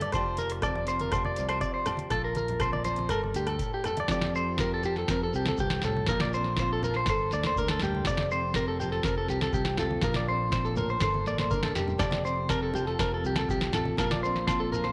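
A straight 4/4 groove at 121 BPM drives this joyful highlife guitar band excerpt in F major, where a booming analog drum machine with a deep kick, crisp snare and metallic hats joins a round, dark fingered electric bass, very quiet low-tuned congas, a grainy shekere and ringing agogo bells that sound at the opening and return at 12.0 s, while an up-front, compressed clean electric guitar plays arpeggios through spring reverb and tape echo over a full-bodied, fingerpicked nylon-string guitar, with a drum fill at 11.4 s and sus2 chords on F, Bb and G sitting in light studio ambience.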